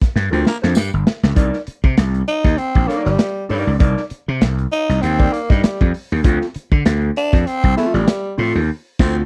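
Funk excerpt at 98 BPM in C dorian with a sly, driving swing, where a crunchy, saturated breakbeat kit opens on a drum fill, a growly, overdriven slap bass and a mellow, clean electric guitar settle over Gm7 into Cm9, a raspy baritone saxophone and a jingly tambourine flash by briefly, and a breathy, growling tenor saxophone carries the melody from 2.3 to 8.4 seconds before a band accent closes this dry, close 1970s-style studio take.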